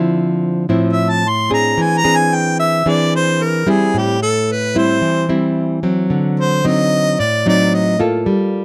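A fingerpicked nylon-string guitar opens this wistful, smooth bossa nova fragment with classical-toned acoustic chords through Dm9, E7alt, Am7 and D7b9, and from 0.9 seconds a clear, up-front harmonica takes the jazz-style solo melody with light vibrato and scooped notes, all captured dry and close in crisp detail.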